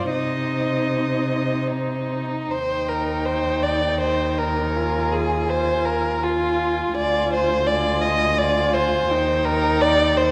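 In a rubato 3/4 that drifts between 75 and 86 BPM, this slow romantic movement for string quartet in E-flat major unfolds with an elegiac, yearning mood, cut from a longer piece. All four bowed players are muted throughout the 10.3 seconds, giving the ensemble a veiled, shadowed colour. The first violin carries the melody high between C5 and Ab5, sitting in the background with vibrato, a soft attack, portamento and a smooth top. The second violin's line is up front, and the viola supplies a narrow accompaniment around Eb4 to F4. A close, up-front cello anchors the bass, all voices dark in tone. The harmony opens on C minor before settling into E-flat at 2.5 seconds and passing through Fm7 over Eb and a half-diminished D chord on its way home, all bathed in a moderate scoring-stage reverb.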